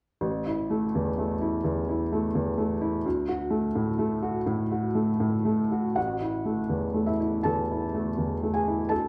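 A felt-muted upright piano plays alone in this short, tender piece of neoclassical minimalism, its boxy, mellow tone sitting up front with audible action noise and a short sustain. The playing is rubato, with uneven beats, and a slapback echo on the piano adds a doubled edge within light reverb and a dark production. Cut from a longer work, it moves through A5 and D chords before a new passage begins at 6.0 s, returning to A5 and running until 9.1 s.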